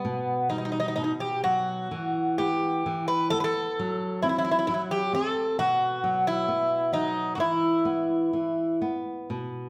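A moderate recital-hall reverb surrounds this short, mournful fado-style ballad, cut from a longer piece and played in E harmonic minor at a rubato 65 BPM in 2/4. Up front, a picked Greek bouzouki carries the longing melody with a metallic double-string ring, some strings octave-doubled, until 8.8 seconds. Beside it, a fresh-stringed flamenco guitar, fingerpicked and warm, accompanies through 9.7 seconds over harmony that moves from B augmented through B and E fifths and an F#m7b5.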